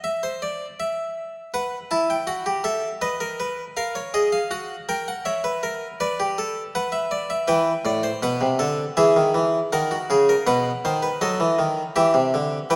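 This is a classical, baroque-style three-part fugue for solo harpsichord, heard in a short passage taken from a longer work. The mood is serious and contemplative, set in a steady 4/4 with a straight feel. The single harpsichord plays throughout the 12.8 seconds, ranging from A2 up to A5. Its Italian-style voice is bright and plucked, on one set of strings, and sits up front in the mix. A moderate concert-hall reverb with a 2.0-second decay surrounds the instrument as the harmony moves from a chordless opening through chords such as Bm, Em and F#7 before landing on B and then Em near the end.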